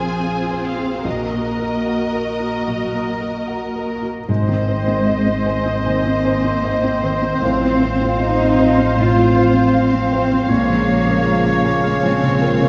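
Cinematic orchestral music, moving and sorrowful, unfolding with a loose, rubato feel in 4/4, cut from a longer piece. It opens with a felt-muted upright piano, soft and intimate with thick felt and audible action noise, alongside a lush, vibrato-rich violin section carrying the melody in the background and a second violin line that sounds smooth and even. A viola section with soft attacks and expressive portamento adds accompaniment, while a ringing, fingerpicked concert harp spins arpeggios. At 4.3 seconds the texture deepens: a clear, distant oboe and an airy flute with crisp attack trace second lines, a dark French horn section holds sustained chords, and a woody cello section joins a rich, distant double bass section on the bass. The whole ensemble sits further back in a wet scoring-stage reverb, giving the sound a spacious, cinematic glow.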